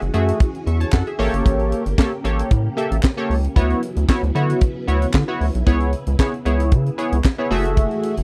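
A straight 4/4 groove at 114 BPM drives this short slice of early-eighties boogie funk in F# minor, danceable with a late-night feel. The tight funk drum kit sits up front with a high-tuned snare, a tight kick, hi-hat and handclaps, sounding acoustic and natural in a small room. A group handclap, human and crisp, adds a background layer from 0.9 to 7.4 seconds. A rubbery square-wave bass, hollow and bouncy with a resonant filter pluck, anchors the low end up front, while a punchy polysynth comp of detuned sawtooth tones warbles with chorus and a filter sweep. Behind them a lush string machine with a sub octave, phaser and ensemble chorus sustains soft-edged chords as the harmony moves from F#m9 through A7b9, Dmaj13 and C#m7 back to F#m9, all captured in a dry, close 1970s-style studio sound.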